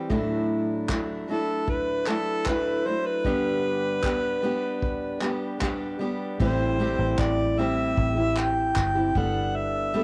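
Recorded at home on cassette with light reverb and small-room ambience, this tender, reflective acoustic pop piece at 76 BPM opens on a bright, up-front fingerpicked steel-string guitar over a distant, roomy unplugged drum kit of dark crash cymbal, tight kick and handclaps played with bundle sticks, before a mellow jazz-style harmonica enters at 1.3 seconds with light vibrato, tongue slaps and a smooth top, and a round, punchy, foam-muted vintage electric bass joins at 6.4 seconds as the harmony moves from Dadd9/A and G to Am7 and Gadd9.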